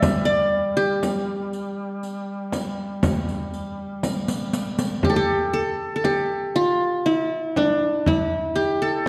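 Arabic maqam ensemble music, soulful and hypnotic, at 120 BPM in a straight 10/8 tuned to A4 = 445 Hz, in which an up-front, bright-edged qanun with triple strings and fingerpicks carries the melody between D4 and E5 over a deep, close frame drum played with soft hands, while a distant, roomy duduk holds a warm folk-style G3 drone with vibrato and a dry riq adds bright jingles until a drum fill from 4.0 s leads into the second section at 5.0 s, where the riq stops and the duduk drops out at 5.1 s, the whole excerpt heard from further back in a wet scoring-stage reverb.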